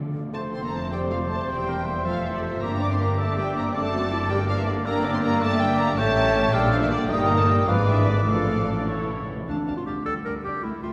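Drenched in a church's long, wet reverb, this fragment of a quick, dramatic and restless classical-period movement in a lilting 6/8 moves with flexible, rubato timing. Muted violins carry the veiled melody over a lush, con sordino viola section and a dark bed of distant cellos and veiled double basses, while a second violin line sits softly in the background. Clear clarinet, pure flute and a gently vibrato-tinged oboe weave supporting lines, mellow French horns hold sustained chords, and round, soft-mallet timpani open the passage, then return at 8.3 s, with a fill arriving around 8.9 s.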